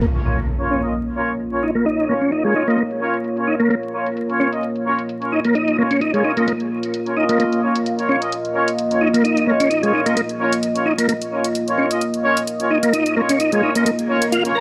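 Heard through vinyl crackle in a wet small room, this swaggering, energetic breakbeat cut from a longer piece runs at 130 BPM in 4/4 with a light 16th-note swing, sitting on a B-flat minor chord throughout. A smooth tonewheel organ riff with chorus vibrato, fast rotary speaker and dub echo carries a filter sweep across the whole passage, over a deep, moody, detuned pad of sustained chords and distant, roomy brass stabs with their own dub echo. Overdriven, layered electronic hi-hat drums also move through a filter sweep, while an electronic impact opens the piece and a swell arrives at 14.0 seconds.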